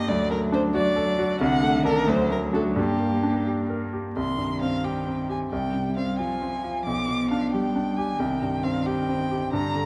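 In a straight 6/8 lilt at 89 BPM, this quick, restless and stormy classical-period piano trio movement in G minor, cut from a longer piece, sets an expressive, close violin melody with vibrato and portamento over a smooth, even bowed cello line and a bright, brilliant grand piano accompaniment with audible action noise, all three playing throughout as the harmony turns to C minor at 4.2 s, heard inside a wet recital hall with a dark, warm production.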